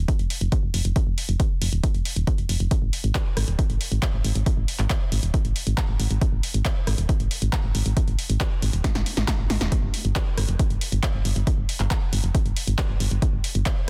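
Dry and densely limited, this short cut of uplifting trance feels soaring yet bittersweet, driven by a dark, round FM bass that sits up front and pumps with sidechain compression. A punchy analog kick, re-recorded in a small room, anchors the straight pulse. A drum machine layers handclaps, hi-hat, rim click and a punchy snare with a short room on the snare, clap and hats, and the drums break into a fill from 8.8 to 9.7 seconds.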